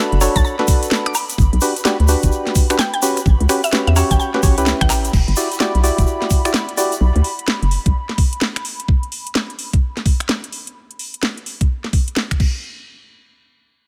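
A hollow, knocking FM bass sits up front in this bouncy, moody two-step UK garage cut at 128 BPM in E dorian, swung on the 16ths, driven by a tape-warm electronic kick and a garage kit of cracking snare, metallic hi-hats, handclaps, finger snaps, woodblock and crash cymbal. Through the opening drop over Bm7, Gmaj7 and A13, a woody, round mallet-like synth pluck with 12-bit grit carries the melody beside dark organ stabs with tape echo, while a grainy tube shaker and an airy, breathy pad with sidechain pumping sit in the background. A drum fill and band accent at 4.9 seconds lead into an Em9 passage where the pad takes a filter sweep, and after the harmony drops out at 7.0 seconds the drums carry on to 12.5 seconds.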